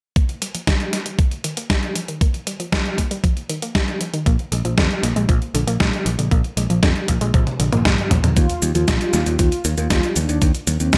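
Playful and danceable, this italo disco excerpt in Eb major moves at 117 BPM in a straight 4/4, with a punchy, detuned unison pluck playing arpeggios in the background under a filter sweep and delay, an up-front thumpy overdriven kick, and a 12-bit drum machine with cabasa, hi-hat, medium-tuned snare and toms soaked in gated reverb and re-recorded in a large room. The harmony moves from Ebadd9 to Bb7, where a growly picked electric bass joins at 4.3 seconds, and after a drum fill a round, brassy synth melody with chorus, vibrato and tape echo arrives at 8.4 seconds over a return to Ebadd9.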